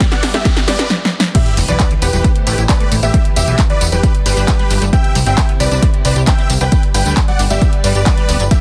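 Uplifting trance at 134 BPM in G major, this euphoric excerpt opens with a 1.3-second build-up of drum-machine fills, a riser and a noise sweep before dropping at 1.3 s into a progression that moves from Em and Am7 back to G and C. A huge, detuned supersaw lead carries the melody over a punchy, up-front kick, a dry drum machine with snare, handclaps, hi-hat, tambourine and crash, and a funky, plucky sawtooth bass, with the bass, lead, piano and strings all pumping against the kick. In the background, a squelchy, resonant acid bass arpeggiates with chorus, grit and dub echo, a dark, boxy grand piano adds a second line, soft bowed strings float sustained chords, and the sub drop ends by 3.1 s, all within a dense, heavily limited master.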